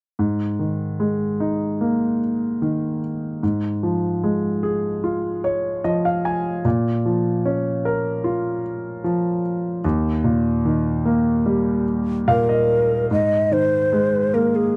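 In a straight 4/4 pulse, this hopeful, heartfelt pop passage is carried by a clear concert grand piano with a deep bass, which plays the accompaniment up front and adds fills around 5.0 and 11.9 seconds before a breathy, hollow shakuhachi carrying a slapback echo takes up the melody at 12.3 seconds, all captured in a dry, close 1970s-style studio booth.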